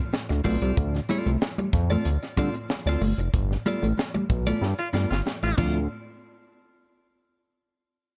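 This funk excerpt has a dark, lightly reverberant production, with a fat, detuned sawtooth analog bass sitting up front from 0.3 seconds, thick and sustained with a fast attack. At 94 BPM in a straight 4/4 and D dorian, the hypnotic groove moves from Dm7 to G9 at 3.3 seconds and back to Dm7 before the band stops at 5.9 seconds. A polished fusion drum kit drives it with a punchy kick, high-tuned snare, hi-hat and dark crash cymbal in an airy studio room, while very quiet, close and dry congas add bright, thin-skinned touches under soft hands. A dark, fingered electric guitar repeats a low riff, and a clean, picked and compressed electric guitar comps above it through a spring reverb. The band hits an accent from 3.3 seconds with a drum fill under it from 4.6 seconds, and a clear, present tenor saxophone slips in at 4.8 seconds, playing on F4 with light vibrato and scooped, jazzy phrasing.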